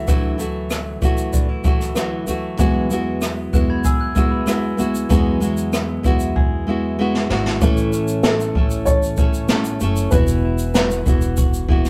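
A straight 4/4 groove at 96 BPM rides on an up-front jazz brush kit with a boomy kick, rim click and shaker, alongside a woody pizzicato upright bass, in this easy-going, heartfelt acoustic pop excerpt in A major. A bright, fingerpicked nylon-string guitar carries the accompaniment while a clean, compressed electric guitar plays arpeggios in the background, and a mellow, slightly detuned upright piano states the melody briefly at the start and returns at 8.2 seconds. A bell-like glockenspiel with soft plastic mallets enters at 3.5 seconds for a short delayed second line, a drum fill leads into a new section at 7.6 seconds, and the whole piece sits in a rough rehearsal-room sound with light reverb.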